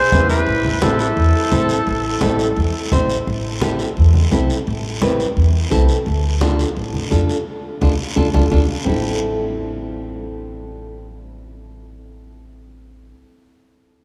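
Opening on a vibrato-laden oboe melody over a dark, clean electric guitar line, both gone by 2.9 seconds, this passionate, danceable cumbia excerpt in A minor at 172 BPM rides on up-front fingerpicked nylon-string guitar with audible finger squeak, woody pizzicato upright bass, distant low-tuned congas and a raspy guiro, moving from Am to Dm and back, with a band accent and drum fill leading to 8.9 seconds, where the percussion stops and the guitar and bass carry on alone in a vast, echoing cathedral-like space.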